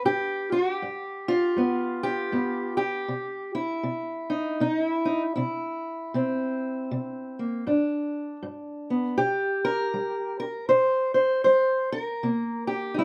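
A fingerpicked steel-string acoustic guitar sits up front in a moderate studio reverb, its parlour-sized tone dark and boxy. This is acoustic country blues in C mixolydian, a rollicking, swaggering piece at 79 BPM in 4/4 with a 62% swing on the eighth notes. The guitar plays alone for the whole 13-second portion of a longer piece, ranging from G2 up to C5. The harmony moves from G7 to C at 3.1 seconds, passes through G, then lands on a thirdless C7 at 9.2 seconds as the opening section begins again.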